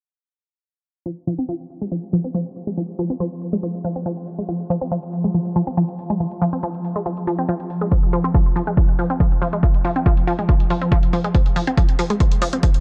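A squelchy, ring-modulated sawtooth pluck with phaser and tape echo riffs up front from 1.1 s alongside a filtered electronic hi-hat, a detuned, swarming granular drone sustains in the background from 2.1 s, and a punchy analog kick lands at 7.9 s in this intense, industrial peak-time techno excerpt in F minor at 140 BPM, where sidechain pumping and a filter sweep run through a light digital ambience.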